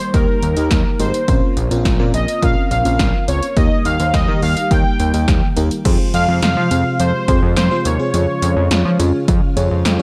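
A straight, steady 4/4 pulse comes from 80s electronic pad drums, with a punchy kick, gated snare, metallic hi-hats and crash cymbal, all given an overdriven edge and placed up front. This short synth-pop cut from a longer piece has a melancholic, nocturnal mood and a dark production bathed in light digital ambience. A fat analog bass with detuned sawtooth tone, a filter sweep and a thick sustain sits up front alongside the drums, while an FM electric piano with a soft pad layer adds lush, dreamy accompaniment with a chorused shimmer and decaying notes. In the background, a vintage, organ-like ensemble string part holds evolving sustained chords through an ensemble chorus. Over the top, a bold, brassy analog synth lead carries the melody with vibrato, tape echo and chorus, moving through Eb and Bbmadd9 before the second section shifts to Fm at 5.9 seconds and settles on Db/F.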